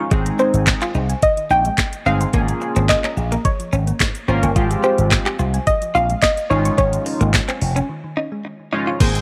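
Euphoric, summery dance-pop excerpt in which a soft, round pluck carries the melody over a bright, punchy slap bass with an envelope filter, a glossy, warbling chorused polysynth and a clean, direct-recorded electric guitar riff in lush chorus, while a tine-like thumb-piano-style synth pluck arpeggiates with tape echo in the background, an up-front R&B drum kit with knocking kick, sharp snare, handclaps and shaker drives the pumping groove, a break arrives at 7.9 seconds, and a very quiet, jingly tambourine sounds at 9.0 seconds under light reverb.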